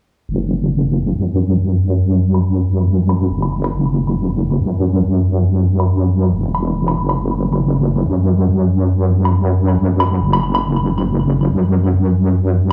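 A wobbling bass opens this heavy, cavernous deep dubstep excerpt at 0.3 s, sitting up front in a dark, saturated low register. Its sound blends sawtooth and sine tones, detuned and thickened with chorus, with a fast attack and sustained, compressed notes. At 2.3 s an electronic woodblock joins, layered and tape-warm, set further back and carried by studio reverb and tape echo. The groove moves in a half-time feel with a light swing on the sixteenths. A filter sweep runs across the whole passage, and the echo-heavy mix in a dry room gets a low-pass filter, keeping the focus on the weight of the bass until the cut at 12.7 s.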